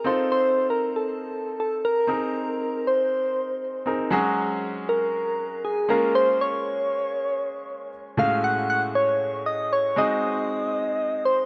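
A lush hall reverb surrounds this nostalgic, romantic pop excerpt at 118 BPM, where a round, gentle FM synth lead with a fast attack and decaying tone carries the melody up front through chorus and delay, over a brilliant concert grand piano with deep bass and short sustain that provides the accompaniment as the harmony moves from F7 and Abadd9 toward a closing Ab7.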